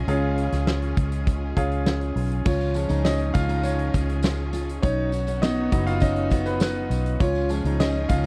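A dry, close recording with a 1970s studio feel opens this short, hopeful slice of piano-driven pop, moving at 101 BPM in a straight 4/4. A bright concert grand sits up front from the start, brilliant and polished with audible action noise and a deep, long-sustaining low end, while a foam-muted fingered electric bass adds a dark, round punch beneath it and a big arena drum kit drives with a fat snare, punchy kick and bright cymbals. Behind them, a lush studio string section holds smooth, focused chords with gentle vibrato. At 2.5 seconds the piano steps forward into a solo as a full-bodied jumbo steel-string acoustic guitar enters in the background with a picked riff, finger squeaks audible, joined by a jingly, band-limited vintage tambourine. The harmony rests on C#, moves to B at 4.8 seconds, and returns to C# at 7.2 seconds.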